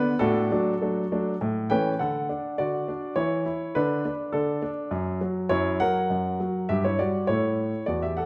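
In a straight 3/4 at 101 BPM, this classical-period piano sonatina moves with an elegant, playful poise in D major, cut from a longer piece. A solo baby grand piano carries everything across the full 8.3 seconds, ranging from E2 up to G5, with a warm, intimate tone that sits up front and lets the action noise come through naturally. The opening phrase settles on D over A before reaching A, and at 2.0 seconds a new section begins on D. A chordless stretch follows at 3.2 seconds before the harmony turns through F#7 and G5 and arrives back on A. A moderate recital-hall reverb gives the instrument a gentle sense of space around its close, unvarnished sound.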